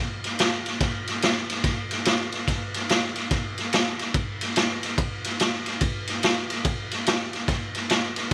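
A swung 4/4 groove at 144 BPM drives this rollicking, swaggering blues fragment, cut from a longer piece. A raw garage drum kit carries it alone from 0.2 to 8.3 seconds, with a boomy kick, medium-tuned snare and ride cymbal sitting up front in a small acoustic room. The kit's saturated, gritty tone and rolled-off top give it a rough, mid-forward sound, framed by light reverb.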